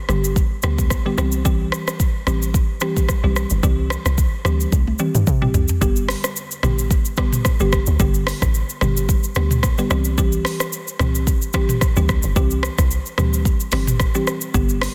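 A dense, heavily limited modern master with light digital ambience frames this sunny, breezy afrobeats clip, cut from a longer piece. At 110 BPM in 4/4 with a gentle swing on the sixteenths, an electronic, produced afro-pop kit sits up front, with a deep kick, dark hi-hats, rim clicks, shaker and toms, and soft clipping adding grit to the snare. Beneath it, a deep log drum bass gives dark, round, percussive FM tones with a fast attack and a noisy layer, each one decaying in the low register. A woody, mellow mallet-like synth pluck carries the accompaniment, its sound coloured by chorus and phaser. The harmony moves between G and C, and a drum fill from 4.7 to 5.8 seconds leads into the second section.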